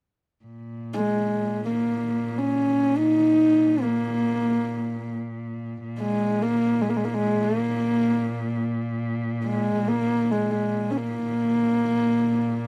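Unfolding in free time, this windswept, vast Mongolian folk excerpt sets a dark, husky horsehead fiddle up front, its airy bow, soft attack, light vibrato and portamento carrying an intimate melody from 0.9 seconds, over a rich, smooth cello drone held evenly beneath it from 0.4 seconds, all captured in a dry, close 1970s-style studio booth.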